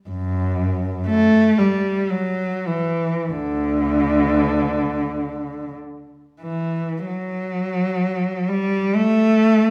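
Classical and unaccompanied, this brief excerpt from a longer piece features a single bowed cello in D major, lyrical and serene, moving in a free, rubato 3/4 at roughly 37-66 BPM. The rich, up-front cello sings with vibrato, soft attacks and expressive portamento in its low register, playing alone from 0.1 to 9.7 seconds, with a new section arriving at 7.0 seconds. A wet recital-hall reverb lends the sound the spacious resonance of a church or concert hall.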